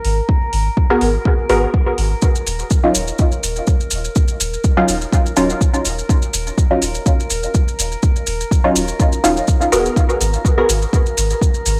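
An overdriven, deep electronic kick drum sits up front in this hazy, cavernous dub techno cut at 124 BPM in Eb minor. A muted, detuned chord stab soaked in chorus, phaser and dub echo joins at 0.9 seconds, its filter sweeping through the opening, while a round, soft sub bass pumps beneath it, metallic hi-hats hang in the background, and a glassy texture of drifting overtones holds Bb4 with a slow attack and its own reverb. Grainy, close maracas enter at 2.2 seconds as the chords move from Abm9 to Ebm9, all over a lightly swung groove in a cassette home recording with light reverb.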